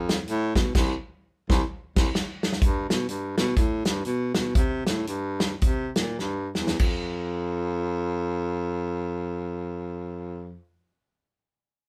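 A live band sound in one room with moderate studio reverb frames this soulful, reverent swung gospel cut, where a mellow baritone saxophone with light vibrato, soft attack and a smooth top carries the low bass line up front until 10.6 seconds, while an acoustic, small-room drum kit with a tight kick, medium-tuned snare, hi-hat and crash cymbal plays a fill under a band accent before the music slows down, then adds a second fill near the end of the slowdown before the drums stop at 7.0 seconds.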